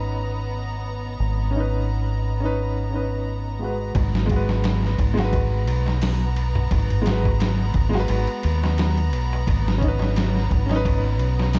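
A lightly swung 87 BPM trip hop groove in G# minor, dark and brooding, carries a round, up-front dub bass, a woody upright piano with tremolo and tape echo, and clear, earthy bowed violin chords, while an airy, breathy wind-like noise layer sits quietly in the background during a filter sweep over the first 4.0 s; a muffled, overdriven sampler-style drum kit with a thumpy kick arrives at 3.9 s and a very quiet, crisp metal-shell darbuka at 4.0 s, the mix steeped in low-passed production and vinyl crackle.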